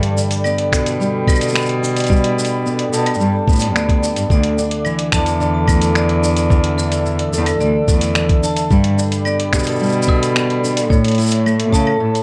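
Folktronica at 109 BPM in a straight 4/4, this short cut from a longer piece feels playful and delicate, moving through Gadd9, Dsus2 and back to Gadd9 before landing on A. A fingerpicked steel-string acoustic guitar carries arpeggios throughout, its tone carrying audible finger squeak and a touch of delay, while a rich, reedy bowed cello sits up front with a gut-string, period-style bass line. In the background, a warbling, nostalgic tape-like pad holds sustained chords with detuned sawtooth and triangle colours, slow attack, chorus and its own reverb. From 0.4 seconds a vibraphone struck with hard mallets adds a metallic, ringing second line with fast motor vibrato and delay. The rhythm comes from a muffled, compressed lo-fi sampler-style kit of claves, finger snaps, hi-hat and shaker, joined at 0.7 seconds by a thumpy electronic kick, both re-recorded in a large room, and the whole is set in a moderate small room.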